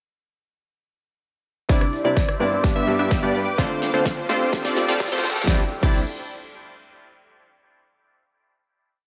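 Euphoric and anthemic, this short festival progressive house piece launches at 1.7 seconds into a build where a punchy four-on-the-floor electronic kick drives a big-room kit of huge snare, crisp hats, rim clicks and crashes. Above it, a filtered supersaw stab plays dotted-rhythm chords alongside a soft felt-muted upright piano with audible action noise, both pumping with sidechain and dub echo, while a bright, catchy plucky unison lead arpeggiates in the background under a filter sweep and a lush, chorused and phased pad glows behind it. A very quiet fat analog bass and a faint riser round out the build before everything resolves onto a final chord at 5.5 seconds in a moderate concert hall reverb.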